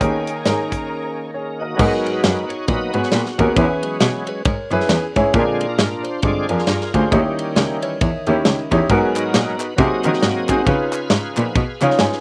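A shouting, lightly overdriven tonewheel organ with key click, chorus vibrato and slow rotary speaker takes a solo from 1.8 s in this soulful, solemn uptempo gospel piece, backed by a clear, worn grand piano that ends on a short fill, a biting, nasal bowed cello carrying the bass, a punchy acoustic drum kit with bright cymbals, a lush, distant string section heard only before 1.8 s, a clean, compressed electric guitar with slapback echo sitting in the background from 4.3 s, and hollow, close group handclaps with slapback echo joining at 9.2 s.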